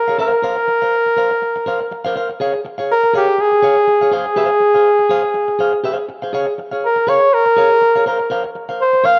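A warm flugelhorn opens this sultry, driving disco fragment, playing a jazz-style solo melody up front with a smooth top and a slapback echo. A clean, picked electric guitar joins at 0.1 seconds as accompaniment over a lightly swung 16th-note feel, moving through Bbsus2, Bbm7, Ab6, Bbm7 and back to Bbsus2. A moderate plate reverb and a dark production surround the pair through the 9.2-second close.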